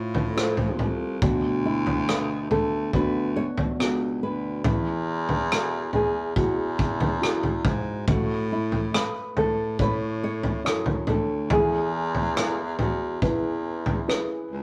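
A nylon-string guitar carries a thumb-plucked classical melody from the start of this tender pop ballad at 70 BPM in 4/4, over a soft, mellow felt-muted upright piano with audible action noise and a smooth-topped baritone saxophone playing the bass line with vibrato. A loose indie drum kit comes in at 0.1 seconds, gritty and saturated, with a punchy kick, rim clicks and toms sitting up front, as the chords move through F/A, D6, Eadd9, A and E. Light reverb colours this rough rehearsal-room recording, an emotional, intimate passage cut from a longer piece.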